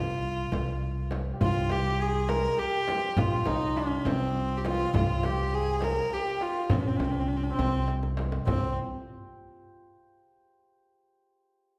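Heard from further back in a wet recital hall, this soulful, longing excerpt of Persian modal ensemble music in C dastgah shur moves in a straight 6/8 at 68 BPM: an up-front, nasal, earthy kamancheh carries the melody with light vibrato and portamento over a woody, thumpy pizzicato upright bass, a very quiet, deep, saturated tombak and a large frame drum in the background, with a drum fill at 7.9 seconds, while a bright, shimmering hammered santur enters at 1.3 seconds as a second line and rings on alone until 9.8 seconds.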